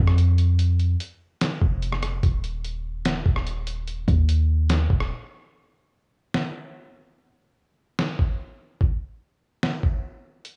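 Dry, with a small room ambience, this hazy, melancholic cloud-rap excerpt at 146 BPM in a half-time feel sets a deep, boomy, mellow 808-style bass, a sine tone with a noise layer, fast attack and decay, up front beside a compressed, pitched-down, muffled sampler-style drum kit of thumpy kick, medium-tuned snare, rim click and hi-hat, until the bass stops at 5.1 seconds and, after a brief break, the drums carry on alone to 10.5 seconds.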